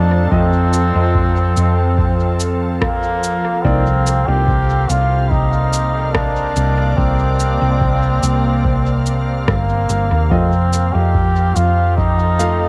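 A straight-muted trombone carries the melody in this ambient dub excerpt, its nasal, brilliant tone shaded with vibrato and sent through dub echo, so it sounds distant and roomy while still sitting up front. The mood is deep and spacious, moving at 72 BPM in straight 4/4 in C dorian, with the harmony passing from F to C7sus2 and on to F7. Beneath it, a fingered hollow-body short-scale electric bass gives a dark, round, amped low end and is the most forward part of the mix. A calm, bright, organ-like pad of pure sine tones holds sustained chords throughout, with a slow attack and long release, thickened by ensemble chorus, its own reverb and cassette tape colour. A woody upright piano adds background stabs through tape and dub echo, heard until 3.8 seconds and again from 10.3 seconds. A deep analog electronic kick and a produced electronic cabasa with rim click, the latter also echoed, keep time, and this home cassette recording sits in light reverb.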